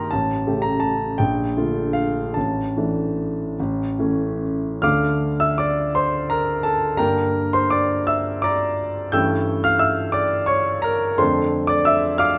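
In 6/8 with rubato, dotted quarters moving at 46-60 BPM, this bittersweet, passionate romantic character piece for solo piano sits in D minor and is cut from a longer work. The concert grand spans A1 to G6 and sounds intimate, polished and up front, with deep bass, long sustain and audible action noise, set in a moderate recital hall reverb. The opening passage moves through A7, Bbmaj7 and Asus4 to A, and a new section begins at 4.8 s, turning through Dm, Gm and A7/G before arriving on Dm/F at 11.2 s.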